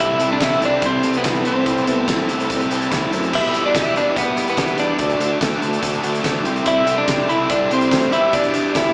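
Cut from a longer indie rock piece and heard as if through a small club's PA, this restless, cool passage opens with a compressed, up-front twelve-string electric guitar melody bathed in spring reverb and digital delay, a very quiet vintage trumpet carrying a second line with vibrato, a mellow, flute-like tonewheel organ holding sustained chords through a slow rotary speaker in the background, crunchy overdriven and high-gain distorted guitar riffs with slapback echo, and a punchy picked bass, before a loose drum kit with a fat snare and dark cymbals and a jingly tambourine join at 0.2 seconds over chords moving from C6 through Amadd9/C, Em7 and Dadd9.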